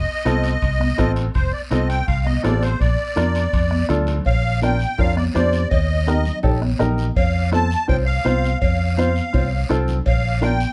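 A reedy, shimmering musette accordion carries the melody through plate reverb in this festive, joyful cumbia excerpt at 165 BPM in Bb major, with a round, dark fingered electric bass sitting up front and a woody upright piano with short sustain filling in the accompaniment. A close, dry bombo anchors the groove, while bright high-tuned congas and ringing timbales and cowbell sit further back in a large room and a raspy guiro stays in the background, with drum fills at 3.7 and 9.3 seconds. The harmony moves from F7 to Bb, Eb and F before resolving on Bb, all wrapped in a dark production with light reverb.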